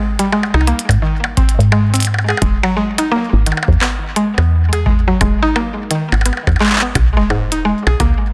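A bright, percussive mallet-like synth pluck opens this playful, intricate IDM fragment at 86 BPM with swung 16ths, spinning out arpeggios with chorus and tape echo. A glitchy drum kit of clicky hats, handclaps and percussion blips joins at 0.2 seconds, carrying overdrive and tape echo; a round, dark FM bass sits up front from 0.5 seconds; and a deep analog kick, also overdriven, lands at 0.9 seconds. The harmony moves from Ab to E, under light reverb and a dense, heavily limited modern master.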